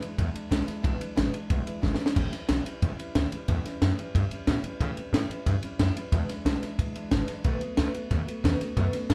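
This upbeat, retro rockabilly excerpt opens with the whole trio playing together in straight 4/4 at a brisk 182 BPM, tuned to A4 = 444 Hz. A compact cocktail drum kit sits up front with a punchy kick, a high-tuned snare, and crash and ride cymbals that have a smooth, rolled-off top and a dark, small-room character. Beneath it, a pizzicato upright bass on gut strings gives a woody, thumpy low end, while a picked steel-string dreadnought guitar adds warm accompaniment a little further back in the mix. A quick drum fill from 1.8 to 2.2 seconds leads the band from E7 to A7, and the harmony later returns to E7 before moving to B7 at 7.5 seconds. Light reverb gives the feel of a band playing live together in one room.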